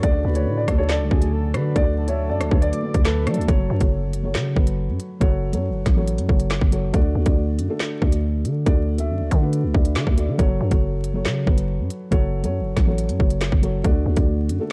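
Dark, vinyl-crackled digital ambience frames this cold, tense drill excerpt in F# minor at 139 BPM, with a half-time feel, moving between D and F#m chords. Up front, a drill kit with a hard-clipped kick, woody snare, crisp hi-hats, handclaps, rim clicks and 12-bit sampler grit drives alongside a growling, buzzy 808-style bass, while a felt-muted upright piano keeps a soft, intimate accompaniment throughout. For the opening 3.5 seconds, a boxy, mellow concert grand carries the melody, joined by a breathy flute-like synth lead playing a second line with chorus and delay and a very quiet detuned sawtooth pad.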